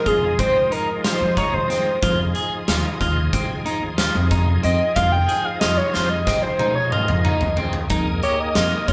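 Straight eighths in 9/8 drive this intricate progressive band excerpt, where a shimmering, retro pulse-width synth lead solos up front with chorus and vibrato over a bright, shouting tonewheel organ on slow rotary speaker, a slightly broken-up, picked electric guitar playing arpeggios through spring reverb, a woody, growly pizzicato upright bass and a punchy, airy big rock kit that plays a fill from 5.9 to 7.9 seconds, as the band plays live in a moderate stone room over a move from Fm7 to Absus2/F.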